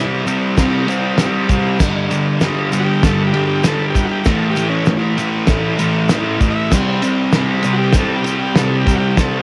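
Rowdy and swaggering, this short garage rock excerpt struts along at 98 BPM in a straight 4/4, cut from a longer piece and captured as a home recording on cassette. A thick, double-tracked fuzz guitar sits up front with a picked, distorted riff in its low register, running from the start to the end at 9.4 seconds. Above it, a vintage combo organ carries the melody with a buzzy, overdriven tone and light vibrato. The cloth-damped drum kit enters at 0.3 seconds, thuddy and close, with a fat snare, tight kick, dark crash and ride cymbals and a rolled-off top that keeps the small-room sound snug. A grainy, bright tube shaker ticks away in the background, while studio reverb and cassette tape color the guitar, organ and drums. The harmony moves through power-chord shapes on C5, G5 and A5 before returning to C5.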